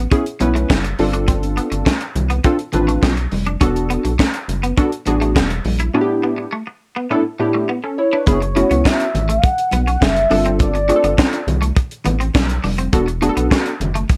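Early-eighties boogie funk at 103 BPM in F# phrygian, this late-night excerpt rides a tight, dry drum kit with handclaps and a high-tuned snare, a rubbery square-wave bass, a punchy detuned polysynth comp and a twangy, clean electric guitar riff through analog chorus, with ringing congas in the background and a velvety synth lead with vibrato and slapback echo arriving at 8.0 seconds over suspended chords in light reverb.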